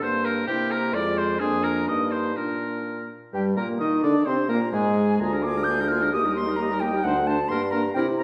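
This quick classical-period movement for wind quintet sounds spirited and graceful, with a rubato feel in two, and is cut from a longer piece. The concert flute carries the melody high in its range with a pure tone, vibrato and a soft, expressive attack. Beneath it, the oboe sings a second line with light vibrato and a distant, roomy quality, while the mellow French horn and the soft-attacked clarinet fill in the accompaniment in the middle register. The bassoon anchors the bass with a warm, lightly vibrato tone that sits up front. All five play together throughout, and the music moves into a new section at 3.3 s. The players are heard from further back in a wet recital hall, whose reverb lends the ensemble a resonant glow.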